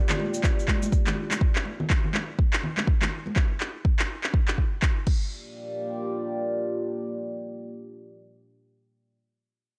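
Afro house at 123 BPM in G minor with a hypnotic, driving feel, cut from a longer piece, where a dark, moody sawtooth pad with sub octave, chorus, phaser and sidechain pumping sustains chords opening on Gm7, a grainy cabasa and thick-skinned, vintage congas add acoustic percussion at the start, and an overdriven deep kick and layered deep house kit with crash and handclaps push up front until 5.2 seconds, leaving the pad alone on a dry, gritty cassette-tape recording.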